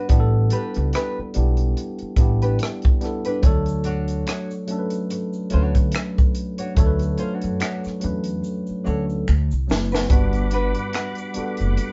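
R&B with a neo-soul lean, this smooth, warm excerpt moves at a relaxed 72 BPM in D major, with a gentle 16th-note swing and the sound of a band playing live in one room under light reverb. A worn, slightly out-of-tune tine electric piano sits up front carrying the accompaniment, joined by a woody, thumpy pizzicato upright bass on gut strings and a compact cocktail drum kit with a punchy kick, high-tuned snare, rim click and hi-hat. A fingerpicked nylon-string guitar weaves a second line alongside them, its finger squeaks audible, while an egg shaker and finger snaps with group handclaps enter at 3.4 seconds in the background. The harmony drifts from A9sus4 to Dmaj7 and D13, and a drum fill from 8.4 seconds leads into a new section at 10.1 seconds, where the chord shifts to Gmaj7. There a lightly overdriven tonewheel organ arrives with sustained chords, its key click, chorus vibrato and slow rotary speaker adding a shimmering glow. 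The overall sound is dark and rounded at the top, giving the whole room a soft, intimate feel.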